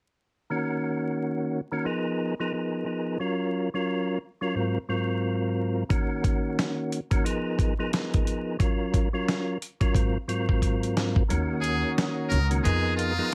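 Swung sixteenths at 89 BPM in 4/4 carry this dark, reflective boom-bap hip-hop fragment in Eb minor, which opens on a mellow, round tonewheel organ with chorus vibrato and fast rotary speaker moving through Ebm7, Abm69/F, Gbmaj7 and Ab13 over vinyl crackle and light reverb. A gritty, compressed sampler-style drum kit with a thumpy kick enters up front at 5.9 s, and a drum fill at 10.6 s leads into a second section at 11.3 s. There the kick drops out, a woody pizzicato upright bass arrives with a smooth, detuned analog pad in the background, and a buzzy, metal-muted jazz trumpet with scooped notes and light vibrato takes the melody.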